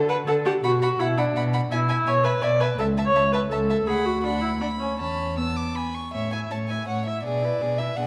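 A dark production in a reverberant recital hall frames this graceful, spirited classical-period movement for string quartet in A major, taken quickly at 165 BPM in 3/4 with a rubato feel, where a close, airy first violin carries the melody above a reedy second violin line, while a rich viola with light vibrato and a nasal cello sit up front as accompaniment and bass, every player bowing gut strings in period style through this passage cut from a longer piece.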